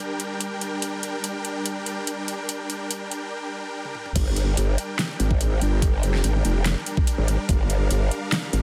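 Dense, heavily limited and bathed in digital ambience, this chaotic half-time wobble dubstep clip opens with lush, detuned supersaw chords carrying 12-bit sampler grit and sidechain pumping over an overdriven big-room drum kit of huge snare, metallic hats, handclaps, toms and crash, and after a drum fill the drop lands at 4.2 seconds with an up-front, growling, saturated wobble bass with chorus and a knocking, distorted electronic kick that stops at 7.6 seconds.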